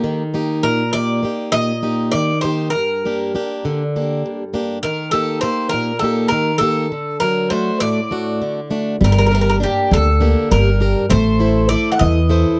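Greek folk in 7/8 with a cool, brooding mood, cut from a longer bouzouki-band piece and set in a dry, close 1970s-style studio sound with light reverb. The bouzouki carries the melody up front, its bright, metallic double strings picked with some octave-doubled courses, while a plugged-in swing-style acoustic guitar picks a boxy accompaniment through chords moving from Eb and Gm to D. At 9.0 seconds a woody, thumpy pizzicato upright bass with steel strings joins for the closing section as the harmony shifts to Gm and Am.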